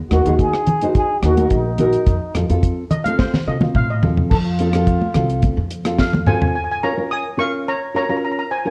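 A straight 4/4 calypso groove at 107 BPM in Bb minor sets a cool, bittersweet mood in this short cut from a longer piece. It is carried by a dry reggae kit with a high-tuned snare and tight kick, damped, soft-handed congas in the background, and a woody pizzicato upright bass with tube saturation. A dark, thumb-plucked nylon-string guitar sits up front, a distant plunger-muted trombone adds a wah-wah second line with scooped notes and light vibrato, and a shimmering lead steel pan played with medium rubber sticks takes the melody from 2.9 seconds. Drum fills arrive at 3.2 and 6.0 seconds as the harmony moves from Ebm to F and on to Bbm7, all under light reverb and the worn, warbly pitch drift of old cassette tape.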